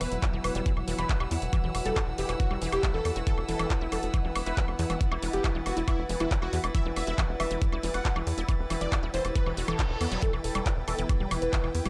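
A thick, detuned unison lead carries the melody through this intense, psychedelic trance passage, its vibrato colored by phaser, tape echo and sidechain pumping, over a punchy sawtooth pluck riff that shares the echo and pumping. A knocking electronic kick sits up front from 0.2 seconds beside a tight, driving sequencer bass, while a layered drum and bass kit adds bright hi-hats, handclaps and woodblock. Floating bowed chamber strings, also pumping, and a very quiet, bubbling resonant filter texture hold sustained harmony beneath, and a reverse cymbal appears at 9.5 seconds, all set in light reverb.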